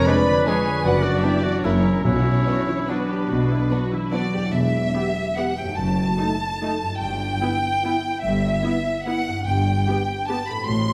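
Dark and sweeping, this classical excerpt moves in a rubato 3/4 at 147 BPM, opening in B minor before turning to E minor at 4.5 s, with a rich, focused chamber violin section singing the melody over a second, intense violin section, a distant, lush viola section, a ringing thumb-plucked harp and a dark, roomy French horn section holding chords. Clarinet, a hollow, very quiet flute group and a soft-attacked oboe add second lines that fall away at 4.1 s, while an intimate cello section and an expressive double bass section carry the bass from about 0.9 s. A very quiet touch of calf-headed timpani sounds near 2.0 s, and the whole ensemble sits in a wet scoring-stage reverb.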